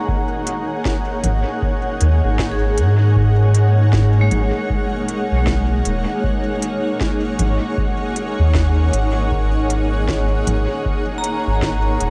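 A cloudy, detuned granular pad and a ringing, airy vibraphone with hard mallets and fast motor vibrato open this hazy, meditative ambient dub fragment together at 0.0 s, the pad up front and the vibraphone arpeggios set back in tape echo, over chords moving from F#69 to G#7sus2 and back. A deep analog kick that sounds re-recorded in a large room arrives almost at once, joined at 0.5 s by a subtler kit of congas, crisp hats and a woody snare sent through dub echo. From 1.2 s a round, soft sub bass sits prominently beneath the swung groove, and the whole dreamy mix is soaked in a huge, lingering reverb.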